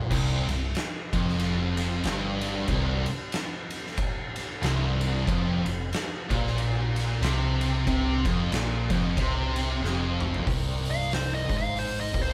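Sludgy and heavy, this short cut from a longer stoner and doom metal piece moves at 93 BPM in 4/4 with a swung eighth-note feel, tuned slightly flat of standard pitch. A thick, double-tracked fuzz guitar sits up front with a high-gain distorted guitar, both playing low riffs through power chords on C5 and then F5 at 5.3 seconds. Beneath them a round, hollow-body short-scale bass adds overdriven weight, while an oversized low-tuned drum kit pounds with a fat snare, boomy kick, dark cymbals and a gritty, saturated, pumping room character. After a drum fill from 9.8 seconds, the harmony shifts to C minor and the second riff guitar stops at 10.5 seconds, making way for a compressed fuzz lead guitar that takes a solo high above the band from 10.9 seconds. The whole group sounds like it is playing live together in a stone room with moderate reverb.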